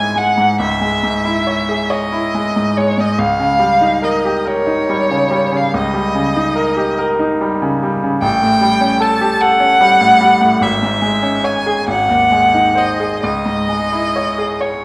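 This romantic classical duo for violin and grand piano is melancholic and solemn, moving slowly at 44-52 BPM in 12/8 with a flexible, rubato feel in C# minor. A single bowed violin carries the melody throughout, its clear, focused tone shaded with vibrato and placed up front, singing between C#5 and A5. Beneath it, the grand piano supplies the accompaniment from the low G#1 up to C#5, sounding bright, brilliant and open, with notes that decay fairly quickly. The harmony moves from C#m through D#7/C# and A7, then settles through C#m/G# and G#7 back to C#m at 13.2 seconds. Both instruments sit in a wet recital hall reverb that lends the passage, cut from a longer piece, a spacious, solemn atmosphere.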